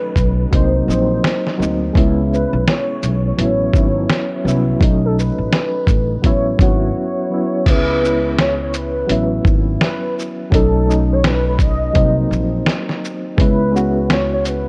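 A swung 84 BPM lo-fi hip hop groove in 4/4 rides on a muffled, compressed sampler-style drum kit with a thumpy kick, fat snare, hi-hat, shaker and crash, joined by a woody pizzicato upright bass with tube saturation, both entering at 0.2 seconds. Soft, round electric-piano-like synth keys with chorus, tremolo and a dark, filtered cassette tone carry the chords, while a velvety sawtooth-and-triangle synth lead glides through a mellow, sustained melody with portamento. The dreamy fragment is bathed in light reverb and worn, warbling tape with pitch drift, with a brief break at 7.0 seconds before the second section opens at 7.7 seconds.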